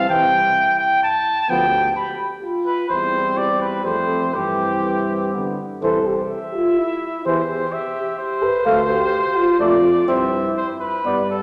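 Heard through a wet scoring-stage reverb, this stately classical brass quintet excerpt moves in a rubato three-four, with a punchy, up-front trumpet carrying the melody above a close-miked, mellow flugelhorn second line, a soft-attacked French horn and a background trombone filling the accompaniment, and a distant, roomy tuba holding the bass through roughly 11.4 seconds.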